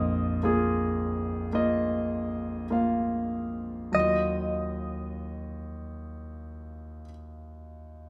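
Pop in Eb minor, this brief passage cut from a longer piece moves at a slow 46-57 BPM in a straight 4/4, with a longing, melancholic mood. A concert grand piano carries the accompaniment from its deep bass up into the upper register. It sounds intimate, smooth and vintage, placed up front with its action noise audible. Over it, a clean electric guitar, recorded direct, plays the melody with a bright, twangy, picked and compressed tone before stopping at 7.0 seconds. The tempo slows through the opening Bbsus4 passage, and the harmony settles onto Ebmadd9 at 3.9 seconds. The players sound as if they are performing live together in one room, wrapped in a wet stone-room reverb.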